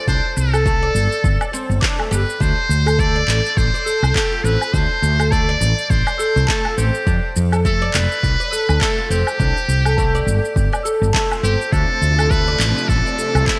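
Swung sixteenths at 103 BPM in 4/4 drive this hypnotic, meditative organic downtempo piece in D dorian, where a deep electronic kick and a gated-reverb patter of electronic shaker, woodblock and handclaps sit beneath a growly, up-front fretless bass with sidechain pumping, woody plectrum-plucked oud arpeggios through delay, and a buzzy, metal-muted trumpet melody with vibrato and scooped notes in digital delay, while a clear bowed string section with its own pumping joins at 11.7 s, the whole mix framed by light reverb and bright 1980s-style digital production in this brief cut from a longer piece.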